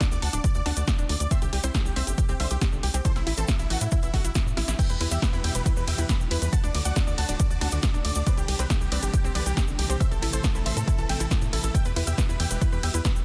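Uplifting trance at 138 BPM in E minor, euphoric and emotional, this excerpt sets a huge detuned supersaw lead with phaser and delay over two rounded analog plucks in the background, one carrying a second line and the other warbling through arpeggios with chorus. An up-front, tape-tinged electronic kick and a tight, driving sawtooth sequencer bass anchor a punchy analog drum machine with hats and cymbals pumping to the sidechain, while a grainy, close cabasa adds sparkle. After a drum fill at 4.6 seconds, a lush, biting symphonic string section enters at 4.8 seconds with sustained chords in the background of the dense, heavily limited, nearly dry mix.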